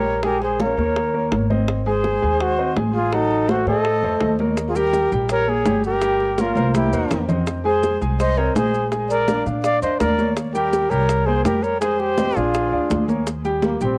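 Afro-Cuban jazz at a brisk 166 BPM in Eb mixolydian, sunny and danceable, with a dark, whispered trumpet up front carrying the melody while a bright, metallic flute with vibrato weaves a second line until 13.1 seconds, its sound dressed in plate reverb and tape echo. A natural-sounding grand piano with plate reverb supplies the chords, a woody pizzicato upright bass anchors the low end, and high-tuned congas heard in a distant, large room join tight, dry bongos struck with hard hands, with grainy maracas arriving quietly at 4.6 seconds. A drum fill marks the midpoint, and the whole home cassette recording carries a light reverb and the soft grit of tape, cut from a longer piece.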